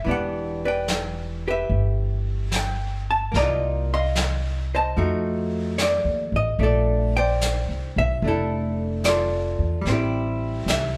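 A tender, late-night jazz ballad fragment with a gentle swing, where a dark, clean, hollow-bodied archtop guitar plays an up-front picked accompaniment over a woody, thumpy pizzicato upright bass and a vintage brush kit with a rolled-off top on snare and hi-hat, all captured live together in one large studio room with moderate reverb.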